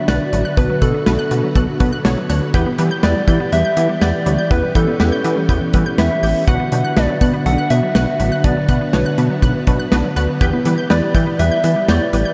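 This synth-pop excerpt opens with a soft, round struck synth lead singing a melancholic melody over organ-like ensemble strings and a squelchy, resonant blip pluck running arpeggios in the background. At a driving straight pulse, a fat analog bass sits up front, thick and detuned, while a modern studio drum kit of kick, snare and hi-hat keeps time with a dark, rolled-off top and a tight kick. A lush, detuned unison pluck fills out the accompaniment with a wave-folded, noise-layered edge and a filter sweep. The lead has a gentle, keys-like FM character, warbling under chorus, tremolo and analog delay, while the vintage organ-strings hold sustained chords with a soft attack beneath an ensemble chorus. The harmony moves between Bm and Em, and a huge ambient reverb soaks the whole mix in a dreamy wash.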